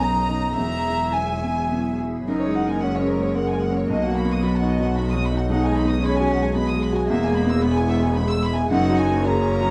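From the first moment, a reflective and fragile neoclassical piece for piano and strings unfolds in a flexible, rubato triple metre, cut from a longer work. A chamber violin section carries the melody with light vibrato and a smooth, sul tasto top, while a dark solo cello sings a second line beneath it. A woody, boxy upright piano provides the accompaniment, its long sustain and audible action noise lending an intimate feel, and a lone viola with an airy bow sits in the background. A rich bowed double bass stands up front on the bass line, and a very quiet organ-like pad built from detuned sine and sawtooth tones holds sustained chords with a slow attack and ensemble chorus. The players share one room with light reverb, and the harmony moves from G#m7/B and E to F#add9 at 2.3 seconds, where a new section begins.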